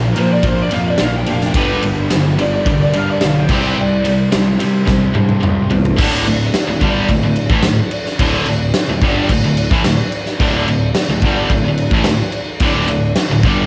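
Hard rock at 109 BPM in D minor with a driving, aggressive mood: three overdriven guitars, one bright and picked in the background, another bright and very quiet, and a sludgy double-tracked one also very quiet, play riffs over a growly fuzz bass and an up-front arena drum kit with a fat snare and punchy kick, while a lo-fi lead guitar through a small cranked amp with tape echo plays a melody from 0.2 to 4.1 seconds before a drum fill leads into a D5 chord at 6.0 seconds, all captured as a home cassette recording with light room reverb.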